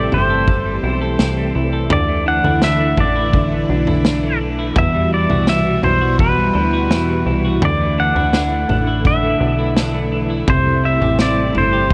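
Dreamy and floating, this dream pop passage moves at an unhurried 84 BPM in a straight 4/4, cut from a longer piece. A bright, twangy pedal steel guitar carries the melody up front, its fingerpicked slide lines and volume swells trailing tape echo over chords that drift from C6 through Dsus2 and Emadd9 and back. Beneath it, a clean electric guitar picks arpeggios drenched in lush chorus and tape echo, while a vintage string machine voicing violas holds soft-attack sustained chords with an ensemble chorus shimmer. A plucky analog bass with a fast, decaying filter pluck adds a funky bounce, and a vintage drum kit enters at 0.1 seconds with a punchy kick, medium-tuned snare and toms, its sound mid-forward with a rolled-off top. A very quiet vibraphone struck with hard mallets rings with metallic motor vibrato in a boxy small room, appearing briefly at the start and returning at 6.5 seconds. 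Light reverb and small room ambience give the whole a close, intimate sense of space.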